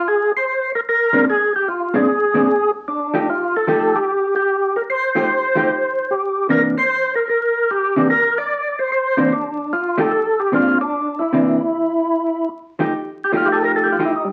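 A swung 4/4 at 149 BPM drives this short, soulful jazz fragment, cut from a longer piece and bathed in a bluesy mood. A percussive tonewheel organ carries the melody from the very start, its fat, lightly overdriven tone marked by key click, second-harmonic percussion, chorus vibrato and a slow rotary speaker, sitting up front between G3 and D5. Entering at 1.1 seconds, a vintage hollow-body electric jazz guitar supplies accompaniment that is dark, clean, picked and compressed, also placed up front. The harmony moves through ninth chords on Bb, F and C. At 12.9 seconds the organ steps into a brief solo to close the passage. A wet studio reverb and the crackle of a very old 78 rpm record give the sound an aged, roomy patina.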